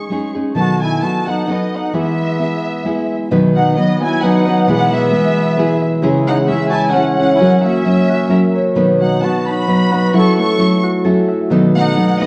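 In a lilting 3/4 at 132 BPM with a light swing on the eighths, this short excerpt of mariachi-flavoured Mexican folk music sounds proud and festive. A full-bodied, fingerpicked nylon-string guitar sits up front as the accompaniment, while a dark, lush symphonic violin section carries the melody from a distance with expressive bowed vibrato. A mellow, classically styled solo trumpet plays a second line beneath the strings. At 3.3 s a Celtic harp joins with ringing, thumb-plucked arpeggios as the chords move through B, E/B, C#m and F# before settling on B7. The mix sits in a reverberant recital hall, and a worn, warbling cassette-tape character gives it a slightly drifting pitch against a tuning of A4 = 436 Hz.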